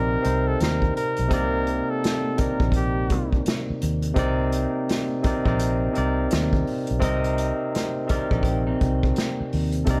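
A late-night, introspective neo-soul and R&B excerpt in C minor at 84 BPM, with a swung 16th feel, resting on a Cm9 chord and tuned to A4 = 436 Hz. A barky, bright tine electric piano played through a combo amp sits up front beside a round, foam-muted vintage electric bass and an unplugged acoustic drum kit played with bundle sticks, its punchy kick, hi-hat and medium-tuned snare heard in a roomy studio space. A smooth-topped flugelhorn with light vibrato carries the melody from 0.0 to 3.4 seconds and returns briefly at the end, a lo-fi, slightly broken-up electric guitar with analog chorus adds a quiet second line from 8.1 seconds, and a mellow French horn section enters in the distant background with soft sustained chords at 9.9 seconds.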